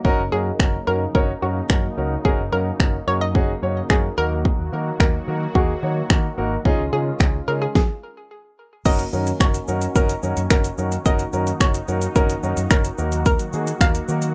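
Dance-pop at 109 BPM in F# major, summery and euphoric, where a punchy, overdriven drum kit with fat snare, metallic hats, snaps and shaker sits up front over a polished grand piano, a round foam-muted electric bass and a soft background supersaw swell, all three pumping with sidechain, while a hollow, nasal square pluck with chorus and delay carries the melody from 0.3 s, a very quiet ring-modulated unison pluck adds arpeggios from 8.9 s after a brief stop at 7.8 s, and chords move F#6, D#m, C#add9 in a lightly reverberant, rough home-demo mix cut from a longer piece.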